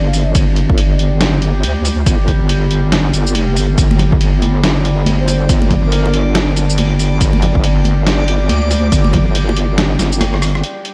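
Meditative and dark, this deep dubstep excerpt moves in a swung, half-time groove beneath a heavy, up-front wobble bass of detuned square and sine unison, while a resonant sawtooth drone with moving overtones and 12-bit sampler grit hums in the background. A punchy, overdriven electronic kick anchors a muffled, pitched-down trip hop sampler kit of hi-hat, ride cymbal, rim click, shaker and snare, and bright, hard-handed congas and bongos join at 3.9 s through dub echo. A distant, breathy ney appears briefly with dub echo and returns at 5.2 s as a reversed, dreamy granular swell sits behind it, before a drum fill closes the drop at 10.2 s.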